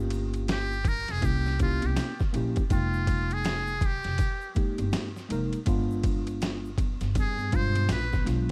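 A worn, slightly out-of-tune tine electric piano and a woody, growly pizzicato upright bass open this cool, smoky jazz-hop excerpt at 81 BPM with a swung 16th-note feel, joined at 0.1 seconds by a gritty, overdriven, pitched-down boom bap drum kit with a thumpy kick up front and ringing egg shaker and congas in the background, before a buzzy, thin metal-muted trumpet with vibrato and analog delay takes a close-miked solo from 0.5 seconds over Gm7b5, C7b9, Fm11 and G7b9 chords, framed by vinyl crackle and studio reverb.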